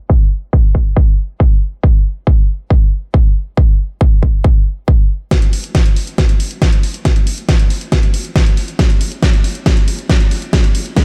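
A straight 4/4 pulse at 138 BPM drives this bittersweet trance passage, with a punchy, layered electronic kick sitting up front from 0.1 s while a filter sweep runs over the opening and a low-pass-filtered digital ambience hangs behind. At 5.3 s a big-room dance kit joins for the build-up, adding hi-hat and a huge snare, both low-pass filtered, in a drum fill that carries this cut from a longer piece to its close at 11.0 s.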